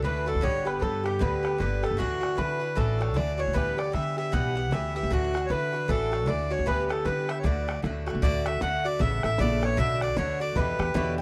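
A dry, close recording in a 1970s studio style, with a touch of light reverb and the feel of a small room, frames this cheerful, bright Celtic hornpipe, a brief cut from a longer piece. The reedy, hollow accordion sits up front carrying the melody with a swung lilt, while a mellow bowl-back mandolin, its picked double strings tucked into the background, adds a second line in the same register. An Irish bouzouki fills out the accompaniment with picked, metallic double strings in a warm, acoustic tone. Up front beside the accordion, a woody, thumpy upright bass plays pizzicato on steel strings, and an open, boomy bodhran with a vintage, band-limited sound keeps the percussion in the background. The harmony moves from G through Dadd9 and Em/D before a second section at 8.2 seconds turns through Aadd9 and Bm to close on Em7.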